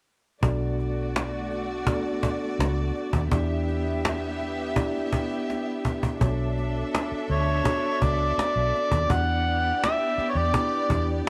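A cajon with faint snares sets a straight, unhurried 83 BPM groove in 4/4 together with a round, punchy, foam-muted electric bass and a mellow tine electric piano sounding through its built-in speakers, all moving between Bm7 and Em7 in this silky, cinematic slice of lush 1970s-style soul in B minor. A close, intimate string section bowing sul tasto with soft attack and light vibrato carries a second line above, and a cajon fill at 5.5 seconds leads into a Bm9 passage. At 7.3 seconds an overdriven, gritty harmonica steps up front for a jazz-style solo full of tongue slaps and scooped notes, all set in light reverb and small room ambience.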